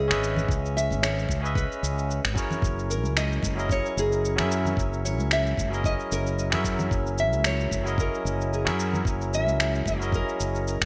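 A fingerpicked nylon-string guitar carries the melody, its deep classical tone catching small finger squeaks and trailing a digital delay as it moves between G#4 and E5. This relaxed sunset chillout excerpt sits at 112 BPM in 4/4 with a light swing on the sixteenths, moving from C#m7 to F#13 at 2.6 seconds. Up front, a clean, barky tine electric piano with its own delay fills in the accompaniment, while a round, punchy fretless bass anchors the low end from F#1 to F#2. The beat pairs a thumpy, overdriven electronic kick with gritty, compressed electronic finger snaps and cabasa bathed in studio and gated reverb, and bright, close congas play along in the background from 0.4 seconds. A light reverb and a bright 1980s-style digital production give the whole warm groove a glossy sheen.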